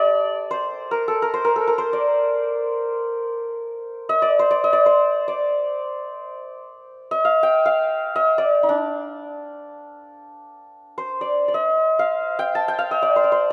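A bright, shimmering santur plays alone and up front in free time, its hammered, ringing tones moving between D4 and A5 in the Persian modal language of dastgah shur on D, carrying a hypnotic, soulful mood through this 13.5-second excerpt of a longer piece, set in a moderate concert hall reverb.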